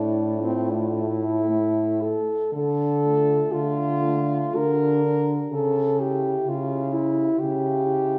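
Yearning and solemn, this brief excerpt from a lyrical classical piece for horn quartet moves slowly in 3/4 at 55-66 BPM with a rubato feel, in D minor over chords that pass from Dm/A through Gm/D to C#dim. A shadowy, distant melody horn sits very quiet behind a warm, smooth-topped second line that stands up front, while a soft-attacked accompanying horn stays in the background. A mellow, punchy bass horn with light vibrato anchors the low register, and all four voices bloom in the resonant, reverberant acoustic of a recital hall or church.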